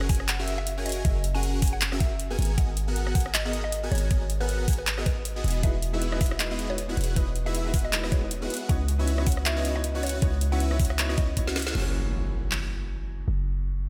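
Up front, a deep, boomy 808-style bass and a knocking, tape-warm electronic kick pump beneath huge, lush detuned supersaw chords in this bittersweet, emotional future bass drop at 157 BPM, felt in half-time with a light swing, moving through F#9, G#m9, Emaj9 and C#m11 chords. A trap kit with a woody snare, metallic hats, handclaps and rim clicks drives the groove, while a woody, round mallet-like pluck with phaser and diffuse delay carries the melody in the background alongside an airy, dreamy lead with vibrato and portamento, and a ringing concert harp is barely audible in the opening 1.9 seconds. A clear, intimate grand piano with audible action noise and 12-bit sampler grit joins at 5.6 seconds, and after a drum fill and accent an electronic impact lands at 11.8 seconds as the chords return to F#9.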